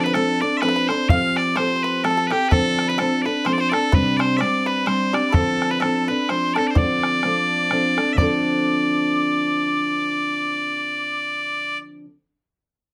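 Celtic folk in a swinging waltz time, this short cut from a longer piece feels driving, dark and lively. Piercing bagpipes carry the melody up front in a continuous solo voice, while a mellow, hollow metal tin whistle sits in the background as a second line, its airy, close-miked tone marked by vibrato, a crisp attack and a distinct chiff. A twangy, percussive banjo played with fingerpicks adds another second line in the background. Up front, a dark, picked steel-string acoustic guitar provides the accompaniment over chords that move among Dm7, Fadd9 and Csus2. A damped, tight bodhran sounds close and dry until it stops at 8.4 seconds, just after the music moves into a new section at 8.2 seconds, and the whole ensemble sits in a wet studio ambience with a short reverb tail.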